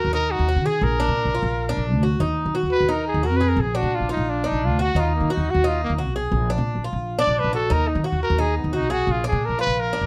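A brisk, straight 4/4 groove at 175 BPM drives this danceable, nostalgic fragment of Cuban son and guajira in E-flat harmonic minor, moving between Ebm and Bb chords with an Ebmadd9 and a closing Bb7. The woody, thumpy plucked upright bass sits up front as the foundation, while the picked Cuban tres spins metallic, double-strung arpeggios across the full 10.1 seconds. A bright, present trumpet with vibrato and plate reverb carries the melody, stepping out for a pop-style solo from 2.2 seconds, all within a dark, warm production bathed in light reverb.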